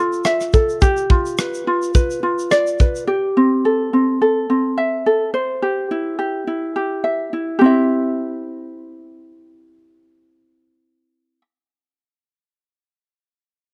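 Carefree and heartfelt, this short acoustic pop passage, cut from a longer piece, moves with a light sixteenth-note swing in 4/4. A fingerpicked ukulele carries the accompaniment throughout, its tone mellow and light, sitting up front across a span from C4 to E5. A modern studio drum kit joins almost at once, with a punchy kick, rim click and shaker in a mid-forward studio-room sound, but it drops out at 3.1 s and leaves the ukulele on its own. The harmony passes through Dmadd9, G7, Am7 and C, and a new section begins at 7.6 s. The recording has a dry, close 1970s-style studio character that keeps both parts intimate and near.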